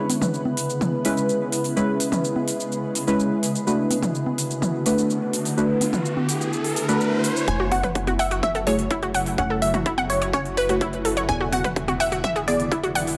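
A straight 4/4 groove of crisp hi-hat and shaker with dry, overdriven congas and toms drives this bittersweet progressive house piece, where a shimmering, ethereal pad and deep, dark chord stabs pump under sidechain from the outset, a riser enters at 4.5 s, and from 7.5 s a punchy, tape-warm kick, a tight, nasal sequencer bass and a lush, wave-folded unison pluck with dub echo join, followed a moment later by a round, detuned analog pluck arpeggio, all inside a moderate hall reverb.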